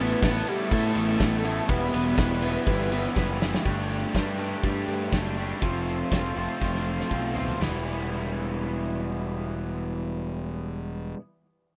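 A straight 4/4 pulse at 121 BPM drives this cool, bittersweet indie rock fragment, cut from a longer piece. A loose acoustic drum kit enters at 0.2 s and sits up front in a pumping room sound, with a punchy kick, medium-tuned snare, hi-hat, ride, toms and dark crash cymbals. The kit plays fills to close the first two sections and drops out at 7.7 s. Over the opening bars, a gritty, screaming, guitar-like synth lead carries the melody with phaser and vibrato, while a barely audible crystalline FM bell traces a second line; both stop at 3.2 s. Two bright, crunchy picked electric guitars play riffs throughout, the rawer garage one adding analog chorus, and a fuzzy, up-front picked bass anchors the low end under chords moving from Asus2 to Em, then Gsus2 and F, before settling back on Em. The whole thing has the rough feel of a home demo, set in a small room reverb.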